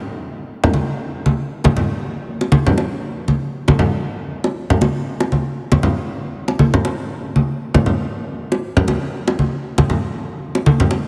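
House groove at 118 BPM in 4/4 with a 55% sixteenth-note swing and a warm, late-night mood, cut from a longer piece, where ringing acoustic congas and bongos, struck with hard hands and placed up front in a small-room sound, play from 0.6 to 11.0 seconds inside a lush, wet hall reverb and a heavily compressed, radio-like sound.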